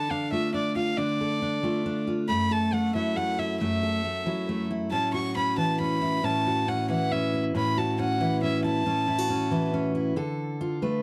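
A single bowed fiddle leads this short folk passage, its reedy, nasal gut-string tone sitting close and up front as it carries the melody between D5 and C#6. Beneath it, a fingerpicked jumbo steel-string acoustic guitar supplies a bright, full-bodied accompaniment, with audible finger squeak, reaching from F#2 up to B4. The tune moves in 3/4 at 137 BPM with a straight feel in A major, tuned slightly below standard at A4 = 439 Hz, and its harmony passes through Dm, F#m7 and A6 before returning to Dm at 10.2 seconds. The fiddle falls silent at 9.7 seconds while the guitar rings on until 11.0 seconds. Captured as a dry, intimate 1970s-style studio take with a small room ambience, the cut from a longer piece feels hopeful and nostalgic.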